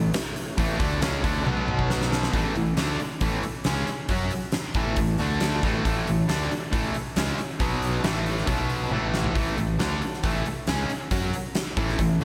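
Classic rock in A major at 137 BPM with a swaggering, confident mood, opening with a very quiet tonewheel organ holding sustained chords through a slow rotary speaker until 2.3 seconds, while two bright, overdriven electric guitars with slapback echo drive a picked riff over a growly fuzz-fingered bass and a huge, up-front arena drum kit with a fat snare and boomy kick, which plays fills at 1.5 and 8.9 seconds, all in a lush hall reverb that gives this excerpt from a longer piece a big arena sound.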